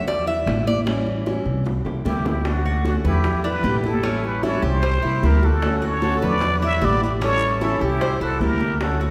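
Danceable and warm, this Cuban son and guajira cut from a longer piece opens with a bright, metallic tres picking arpeggios on doubled strings over a small, fingerpicked nylon-string guitar, a woody, growly upright bass up front and, in the background, thin-skinned, high-tuned congas and round, low-tuned bongos, with a drum fill from 1.7 to 2.5 seconds. At 2.1 seconds a raspy, plunger-muted trumpet takes the lead with wah-wah growls, scooped notes and light vibrato, while a breathy, chiffy metal flute adds a second line in the background. The whole ensemble sits in the lush reverb of a concert hall.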